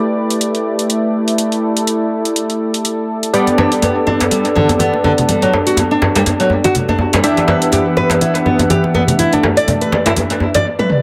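Afro house at 123 BPM with a swung 16th-note feel, driving and hypnotic, where a smooth, detuned analog pad holds sustained chords over A7sus4, G and Em7 while round sawtooth keys play chorused, filter-swept stabs with delay, and an overdriven, layered deep house kit of hi-hat and toms enters at 0.3 s, joined at 3.3 s by a bright, up-front fingerpicked nylon-string guitar arpeggiating through analog delay, then by ringing close congas and a deep, saturated djembe played with soft hands, the echo-heavy mix sitting in a small room with spring reverb before a drum fill at 10.8 s.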